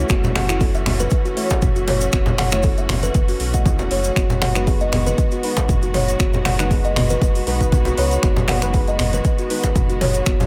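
In this hypnotic afro house passage cut from a longer piece, lush, biting symphonic strings, a soft, dark chord stab with chorus and delay, and a round analog bass open together, each pumping to the sidechain, as a woody kalimba arpeggio with delay joins over an up-front overdriven kick, a deep house kit of finger snaps, metallic hi-hats and toms, and small-room hand percussion of soft-handed congas, a very quiet djembe and a grainy tube shaker, while the harmony moves from F#m7 to G#m7/F# at 4.2 seconds.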